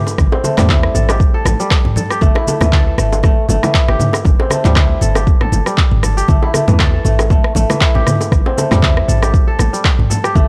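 A ringing, fingerpicked kora opens this driving afro house clip in A minor at 118 BPM, its crisp arpeggios pulsing with sidechain pumping and trailed by analog delay over a progression moving from Am7 to Gsus4 and back to Am7 at 6.3 seconds. Within the first moments, a deep, layered electronic kick sits up front alongside a tape-toned afro-pop kit of handclaps, rim click, shaker and toms, with tight high-tuned bongos and damped, low-tuned congas set further back in a swung 4/4 groove. Underneath, a boomy, mellow 808-style sine bass with tube saturation and its own sidechain pumping anchors the track, all captured with a dry, gritty small-room and cassette character in this cut from a longer piece.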